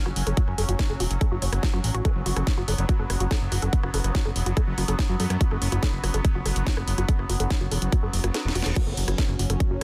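This driving, intense psychedelic trance excerpt at 143 BPM opens on a bright, bubbling texture of sustained chords, built from detuned sawtooth with random filter steps, chorus, 12-bit sampler grit and sidechain pumping. Almost at once a fat analog bass sits up front, joined by an overdriven techno kit with cracking snare, hi-hat, rim click and crash, a punchy layered electronic kick from 0.4 s, and a mellow, woody wave-folded pluck riff in the background carrying chorus and dub echo. A very quiet, warbling tape-like pad adds nostalgic vintage colour, a nasal, dark vowel-sweep wobble bass surfaces faintly from 2.0 s, and a filter sweep runs over the synth arpeggio throughout, until a reverse cymbal sounds at 8.1 s and the kick drops out for a short drum fill in this dry, dense, heavily limited mix.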